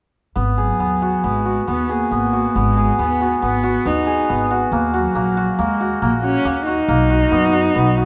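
A shimmering hammered dulcimer spins ringing arpeggios up front from 0.4 seconds, with a woody pizzicato upright bass beneath it, in this hypnotic, restless piece of contemporary chamber music in 5/4 at 138 BPM in G# minor. At 0.6 seconds a single dark, bowed cello enters with the melody, its vibrato close and intimate, as the harmony moves from G#m7 through D#m to Bmaj7. The dry, detailed recording is cut from a longer piece.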